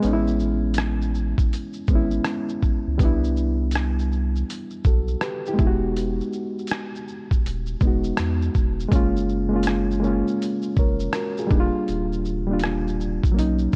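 Lo-fi hip hop at 81 BPM with a swung 4/4 feel, this nostalgic, dreamy excerpt from a longer piece drifts through lush major-ninth chords, from Amaj9 through Cmaj9 and Emaj9 before shifting to Gbmaj9 at 8.9 seconds and then Ebmaj9. Up front, a reedy, worn electric piano that sounds slightly out of tune carries the harmony through a cassette-tape haze and a low-pass filter, while a round sine sub bass sustains deep notes beneath it. A gritty, pitched-down sampler-style boom bap kit, compressed and prominent, punches with a thumpy kick alongside hi-hat, rim click and shaker, all in a dry, close sound with a tape-worn character.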